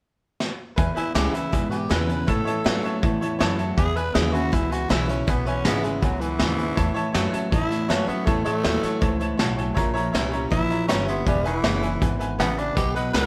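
Upbeat and rowdy, this rockabilly excerpt drives along at 160 BPM in a straight 4/4 in E major and is cut from a longer piece. A vintage brush kit with a muffled, lo-fi sound and a punchy kick sits up front, opening with a fill at 0.4 seconds before the bass, guitars and piano join at 0.8 seconds, with the saxophone following at 1.0 seconds. A woody pizzicato upright bass growls underneath, while a twangy, slightly broken-up electric guitar with spring reverb plays a riff in the background beside a picked steel-string acoustic guitar. A raspy, gritty tenor saxophone with light vibrato carries the melody, and a brilliant upright piano with audible action noise fills out the accompaniment, adding its own fill at 9.0 seconds. The chords move between E6 and A6 before an A#dim7 returns home to E6, all played live in one stone room with moderate reverb.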